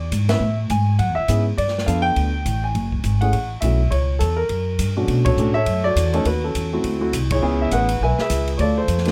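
Warm grand piano and a woody, growly pizzicato upright bass open this brisk, swinging, cool jazz piano trio fragment, joined almost at once by an acoustic drum kit with dark cymbals, a boomy kick, a medium-tuned snare, hi-hat and ride. The piano carries the melody up front over chords such as Amaj7, G9, F#m9 and later Bm9 and D9, while the bass stays close and prominent and the drums sit lower in the mix. The whole band hits accents at 0.3, 5.2 and 7.3 seconds, and the close, detailed, nearly reverb-free sound keeps every part intimate and clear.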